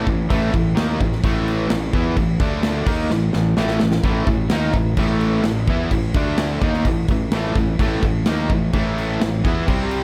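Driving and heavy, this hard rock excerpt in straight 4/4 sets two bright, overdriven picked guitars, a cranked stack and a distorted electric, on a riff that moves between A5 and D5 power chords, with a growly, fuzz-soaked fingered bass underneath. A big acoustic rock kit sits up front with a punchy kick, medium-tuned snare and bright crash cymbals, entering at 0.1 seconds and breaking into a fill from 3.1 to 4.0 seconds. Light reverb gives the whole a small-room ambience.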